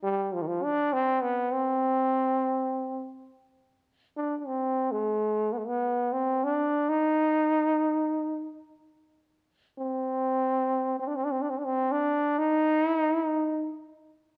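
At a straight, unhurried 98 BPM in 3/4, this short fragment of a longer Persian piece moves in a three-beat pulse, rooted in C avaz esfahan. A single trombone carries the whole passage as a solo, playing from 0.0 to 13.7 seconds across a range of Eb3 to Eb4. Its tone is clear and punchy with a vintage, jazz-inflected character, forceful in attack and shaded by a light vibrato that deepens the soulful, melancholic mood. The horn sits up front in the sound, while a wet recital hall reverb with a 1.5-second decay lets each phrase bloom into the surrounding space. The music shifts into a new section at 3.7 seconds and continues to the end of the fragment.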